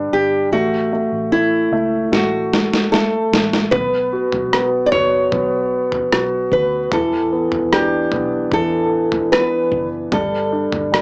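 A melancholic, longing pop ballad in B minor at 75 BPM, this excerpt pairs a fingerpicked nylon-string guitar melody, carrying a cassette-tape tint, with an intimate concert grand piano whose audible action noise and long sustain sit up front. A dark, round, foam-muted electric bass anchors the low end, while a gritty, overdriven boom bap sampler-style drum kit with a thumpy kick enters at 2.1 seconds with a fill that leads into a B5 chord at 3.7 seconds. The whole mix has the small-room, small-speaker character of a home cassette recording.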